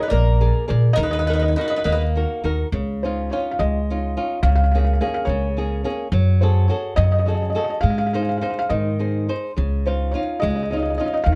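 A dark, warm recording with light reverb frames this excerpt of an Italian folk serenade in Db major, romantic and passionate, moving at 70 BPM in a rubato 6/8. A felt-muted upright piano carries the melody, soft and mellow with audible action noise and plate reverb, over fingerpicked acoustic flamenco guitar accompaniment and a woody pizzicato upright bass that sits up front, while a round, picked mandolin with double strings adds a second line only until 2.0 seconds. The harmony opens on Bb7 and Ebm, settles into Dbadd9 at 2.7 seconds, and passes through Bbm7/Db, Gbmadd9 and Ab before returning to Dbadd9.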